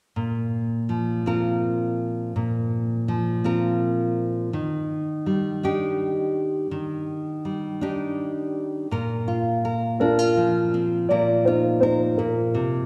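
A fingerpicked, full-bodied nylon-string guitar with fresh strings and audible finger squeak carries this tender, hopeful acoustic folk-pop ballad in Bb major at a slow 55 BPM in 6/8, moving from Bbsus2 to Ebmaj7 before a dark, mellow concert grand piano with deep bass and a boxy tone enters up front at 10.0 s to take the melody, both set in the wet reverb of a church or concert hall.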